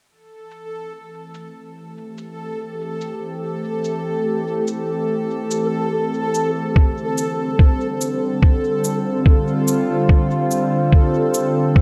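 Deep and meditative, this ambient dub excerpt drifts at 72 BPM in 4/4 with a light 16th-note swing, centred on A minor. A bubbling stepped-filter texture opens the piece at 0.1 seconds, its resonant sawtooth tone shifting through random filter steps, softened by chorus and its own reverb. A warbling, tape-like pad fades in beneath it, holding mellow, detuned chords with a slow attack and long release that give it a nostalgic, lo-fi character, and it sits up front in the mix. A shaker, electronic and tape-warm and placed in a large room behind a low-pass filter, ticks quietly in the background. At 6.8 seconds the harmony moves from Am7 to G7sus4 and a muffled, pitched-down electronic kick drum arrives, thumpy and compressed, the loudest element in the recording. Light reverb keeps the whole space hazy and calm.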